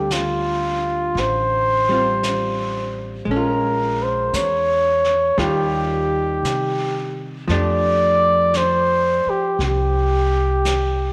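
Late-night and romantic, this slow, swinging jazz fragment puts a bucket-muted trumpet up front, its veiled, dark tone carrying the melody with forceful punch and a smooth top. Beneath it, a clean, compressed hollow-body archtop guitar comps, an upright bass plays woody, thumpy pizzicato, and a softly brushed drum kit with a rolled-off top joins at 0.1 s. A moderate echo chamber reverb gives the ensemble a vintage glow as the chords move from Dm7 through Bbm7 and Ebadd9 to a closing F69.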